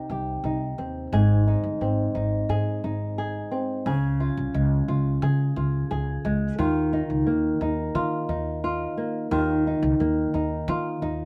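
A warm, thumb-plucked flamenco guitar sits up front in this short acoustic pop excerpt, its strings carrying a faint finger squeak as it plays the accompaniment from the very start. An upright bass joins at 0.1 seconds, plucked pizzicato on steel strings with a woody, growly tone that anchors the low end beneath the guitar. The mood is reflective and tender, moving in a straight, unhurried 4/4 feel. A brief opening on C minor gives way at 1.1 seconds to a longer passage that moves through A-flat, D-flat and an E-flat suspended chord. Captured outdoors with little reverb, the two instruments sound close and dry, cut from a longer piece.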